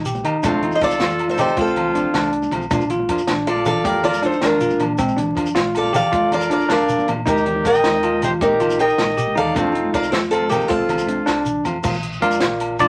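Sunny and carefree, this highlife guitar band clip in a straight 12/8 is led by a boxy, up-front picked ladder-braced acoustic guitar carrying the melody, with a bright, smooth-topped trumpet adding a vibrato-tinged second line. Underneath, a barky, bell-like tine electric piano plays arpeggios, a fingerpicked nylon-string guitar and a dark, round hollow-body bass sit in the background, and a dry compact cocktail kit with a punchy kick and high-tuned snare joins thick-skinned congas, a grainy shekere and ringing agogo bells. A drum fill arrives at 11.1 seconds before the electric piano takes a brief solo from 11.8 seconds, all set in a small room with a layer of vinyl crackle.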